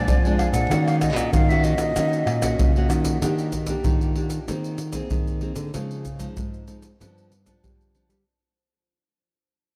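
Bathed in a moderate, vast, echoing reverb, this brief cut from a longer festive, sunny samba and choro piece moves at 95 BPM in a straight 4/4, shifting from Eb minor to Eb major at 3.2 s, where a fade-out begins. A breathy concert flute with soft attack, vibrato and lifted highs sings the melody until 2.9 s, over a fingerpicked classical nylon-string guitar whose chords carry audible finger squeak and a second, warm thumb-plucked nylon-string guitar holding the bass. Up front, maracas, pandeiro, tamborim and a deep surdo played with hard hands sound compressed and saturated.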